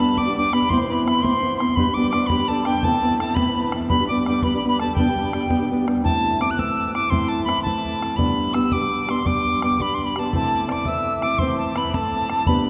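Rollicking and cheerful, this Celtic jig, cut from a longer piece, moves at 112 BPM in 6/8, with a bright, chiffy wooden whistle carrying the tongued melody up front over a dark, boxy fingerpicked steel-string guitar with audible finger squeak, a boomy, close bodhran, and a reedy, mellow accordion second line in the background that drops out at 5.7 seconds and returns at 10.3 seconds, the music ringing in a long, wet church reverb as G and Amadd9 chords give way to Am and G.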